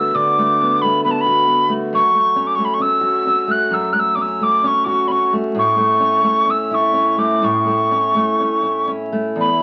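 The sound is that of a very old 78 rpm record, with vinyl crackle over moderate studio ambience, in a cut from a longer Celtic slow air whose haunting, mournful mood unfolds in a rubato 4/4 at 60-69 BPM. A breathy metal whistle carries the melody up front throughout the 9.6 seconds, its crisp, chiffy attack and vibrato giving each note an airy edge. Beneath it, a dark fingerpicked steel-string acoustic guitar, also up front, moves from Bm7/D to F#m at 1.9 seconds and to A at 5.6 seconds.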